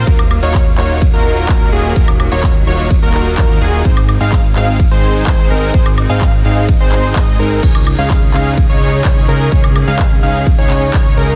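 A straight pulse drives this anthemic, triumphant slice of festival progressive house, cut from a longer piece, with a punchy, up-front electronic kick entering at 0.1 seconds alongside a big-room dance kit of crisp hi-hats, handclaps, crash and ride cymbals and woodblock. Beneath it, a fat, saturated analog bass with a nasal, evolving edge holds the low end, pumping through sidechain compression. Huge, lush supersaw chords carry the riff, bright and detuned, their sidechain pumping and tape echo shared with a thick, bold unison lead that spins arpeggios high above with a touch of vibrato. Far back in the mix, a clear, focused studio string section sustains bowed chords at a very quiet level. The harmony moves from Ebmadd9 to Ab and then Dbsus2 under digital ambience, and the whole is pressed into a dense, heavily limited modern master.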